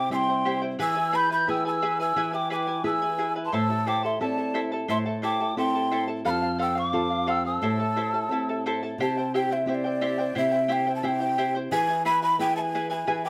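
A straight 2/4 pulse at 88 BPM carries this melancholic, earthy piece of Andean folk in A minor, cut from a longer work. A large quena takes the melody, breathy and mellow with a chiff on its crisp attacks, vibrato, a somewhat unsteady quality and rolled-off highs, set in plate reverb. A polished pan flute plays a second line that sounds airy and distant, tongued with its own vibrato; it drops out at 8.6 seconds and returns at 13.3 seconds. Up front, a fingerpicked charango shimmers on its double strings, some doubled at the octave, while a thumb-plucked flamenco guitar adds warm low accompaniment with audible finger squeak. The harmony moves from C and E to A minor and F, and the opening phrase repeats from 9.0 seconds in a moderate studio room.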